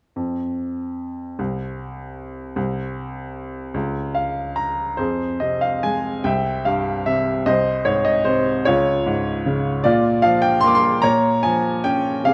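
A bright, woody upright piano sits up front in this melancholic classical fragment from a longer piece, playing lyrically alone in F minor at a slow 50 BPM in 6/8 with uneven, rubato beats, adding a brief fill at 3.7 seconds before chords enter at 5.0 seconds and move from Fm through C, Db and Bb minor, all within a moderate concert-hall reverb and a dark production.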